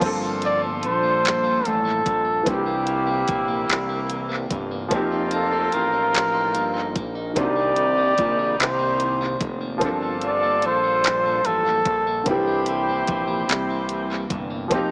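An echo-heavy mix with a small-speaker sound and small room ambience carries this slow, late-night, yearning six-eight R&B excerpt at 49 BPM. A breathy, whispered flugelhorn sings the melody up front from 0.5 s over a dark, mellow baby grand piano with audible action noise and dub echo, a clean, picked electric guitar steeped in spring reverb and dub echo, and tight, distant horn stabs. Beneath them sit a fat, detuned sawtooth analog bass with a moving-notch filter sweep and a smooth electronic drum kit with a knocking kick, tape-warm hi-hat, handclaps and crash cymbal, over a Gm11, C9, F9sus4 and Cm9 progression.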